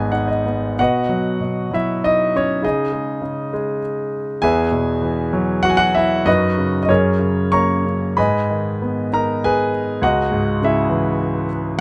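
Flowing in a rubato 3/4 that drifts between 90 and 104 BPM, this lyrical classical solo piano passage in B major carries a cool, bittersweet mood. A concert grand is the only voice, ranging from G#1 up to C#6, and it opens with a brief fill over G#m before the main section settles in at 0.8 seconds. The harmony moves through B, C#sus2, Esus2 and a shift from F#sus4 to F#add9, then returns to G#m and comes to rest on C#madd9 near 10.0 seconds. The instrument sounds polished and intimate, with deep bass, long sustain and audible action noise that puts the listener close to the hammers. Close, detailed miking keeps the piano up front inside light reverb, and the recording is a short cut from a longer piece, ending at 11.8 seconds.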